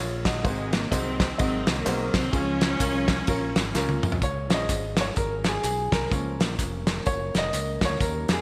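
The recording has a bright 1980s-style digital sheen, set in a lush hall reverb with a small room ambience around it, in this short cut from a longer uptempo gospel piece at 127 BPM in Db major with a swung, uplifting and soulful feel. A woody, intimate upright piano with audible action noise and a punchy fingered electric bass play from the start, joined at 0.3 seconds by a fat-snared soul drum kit with dark cymbals and gated reverb, up front in the mix, and by compressed, saturated tambourine, tube shaker and group handclaps sitting in the background. At 0.4 seconds a close, focused studio string section carries the melody with vibrato and a digital delay, moving over chords from Ab7 to Db. A drum fill at 3.8 seconds leads into the second half, where the piano takes a solo. Behind it a smooth-topped French horn section holds sustained chords in the background, with Bbm arriving at 6.1 seconds.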